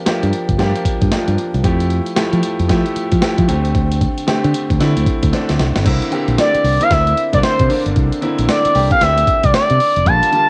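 A swung 16th-note groove at 114 BPM drives this bouncy, confident new jack swing excerpt, where a gritty, compressed sampler-style drum kit with a thumpy kick and a punchy fingered electric bass sit under clear, polished baby grand piano chords moving from Gm7 through Fmaj9 and D7sus4 to C9, a drum fill at 5.3 seconds leads into the second section, and a smooth, expressive sawtooth synth lead with chorus and vibrato enters up front at 6.4 seconds, the piano and drums carrying a cassette-tape tint in a snug home booth recording.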